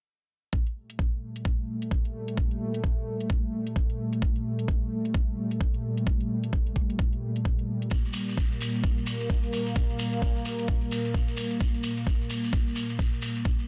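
A sweeping, resonant sawtooth pad sits up front in this gritty, aggressive bass house excerpt, holding a detuned, full-bodied Gmadd9 chord from 0.5 seconds with a slow attack, long release, filter swell, chorus and sidechain pumping. The track moves at 130 BPM in 4/4 in G minor, tuned to A4 = 441 Hz, with a 60% swing on the sixteenths. The drums are electronic, layered and tape-warm: a knocking, up-front kick that is the loudest part, and metallic hi-hats sitting lower, just beneath the pad. At 7.9 seconds a grainy, mellow acoustic shekere enters, sounding distant in a large room and sitting lowest in the mix. Light reverb and a dense, heavily limited modern master round out this single section, which runs to 13.7 seconds as part of a longer piece.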